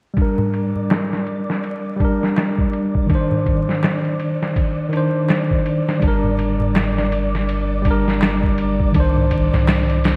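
Melancholic and cinematic, this trip hop excerpt sets an up-front tine electric piano, shimmering with harmonic tremolo, tape echo and a filter sweep, over a gritty, pitched-down boom bap sampler-style drum kit with a thumpy kick and gated reverb, while a hard-handed clay darbuka sits in the background, a flickering granular texture hovers high, and a round, deep dub sub bass arrives at 6.0 s beneath a bright 1980s-style plate-reverb sheen dusted with vinyl crackle.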